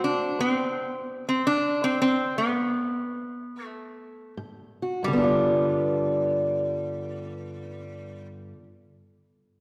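Swung eighths in 4/4 at 87-114 BPM, easing into a slowdown through the opening section, drive this rollicking, soulful acoustic country blues fragment in G mixolydian, where a metallic, nasal lap resonator guitar played with slide and fingerpicks carries the melody up front while a dark, boxy parlour steel-string guitar fingerpicks the accompaniment with audible finger squeak, dropping out after 0.8 seconds and returning at 4.4 seconds, the two ringing out in the long, wet reverb of a concert hall.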